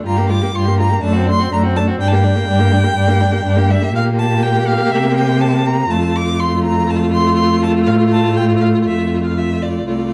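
A quick, dramatic and restless classical-period movement for string quartet at 123 BPM in 4/4 with a rubato feel, this excerpt moves from G minor harmonies into F major by 3.9 seconds, with an expressive, soft-attacked violin melody high in its range over a second violin's distant, portamento-tinged inner line, a smooth, even viola accompaniment, and an up-front, rich cello bass, all bowed with vibrato in a dark production with moderate large-studio reverb.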